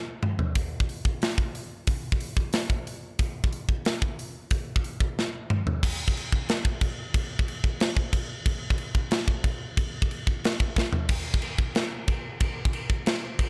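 This metal excerpt from a longer piece is carried entirely by an acoustic drum kit, and the mood is epic and aggressive in a straight 4/4 pulse. The kit sits up front with a polished, airy character: bright china and crash cymbals and hi-hat ride above a medium-tuned snare, a tight kick and a set of toms. The sound is dry, with little reverb, though the kit still carries the feel of a big room. The short passage moves through three sections, with drum fills marking the turns at about 5.2 and 10.8 seconds. The recording runs to 13.5 seconds.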